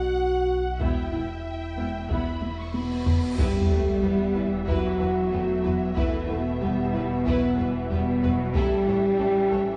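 A straight 4/4 pulse at 93 BPM drives this relentless, futuristic hybrid orchestral and electronic film cue in E dorian, cut from a longer piece, where a dark, up-front French horn section holds sustained chords over a deep sine sub bass with octave, while a dark, distant violin section carries the vibrato-laden melody above a warm, smooth-topped second violin line. From 0.8 seconds, taiko drums struck with hard sticks enter alongside a lush, distant cello section, a focused double bass section, a background viola section, and a soft, round filtered pluck with chorus playing arpeggios. A drum fill and a huge, dark cymbal swell lead to a sub-drop impact at 3.4 seconds, where a bright but very quiet trombone section joins the chords, all set in a moderate scoring-stage reverb.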